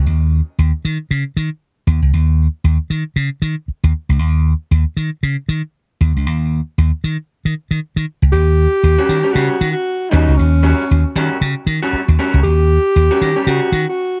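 The production is dark and fairly dry, with a rounded, muffled top end, and this short cut from a longer funk piece sits in a funky, gritty mood at 116 BPM in 4/4 with a 16th-note swing. Slap bass opens alone at 0.0 seconds, bright, punchy and amped, sitting up front over an unaccompanied Eb mixolydian groove. At 8.3 seconds the harmony lands on Eb7#9 as a breathy alto saxophone enters with a jazz-style solo line, close-miked and whispered, with subtone, vibrato and a soft attack, bathed in plate reverb. An electric guitar through a small old amp joins at 9.0 seconds as quieter accompaniment, its picked tone warm, slightly broken-up, compressed and lo-fi, touched with spring and plate reverb. The intimate saxophone and the forward slap bass carry the passage, while the guitar adds a gritty edge alongside them.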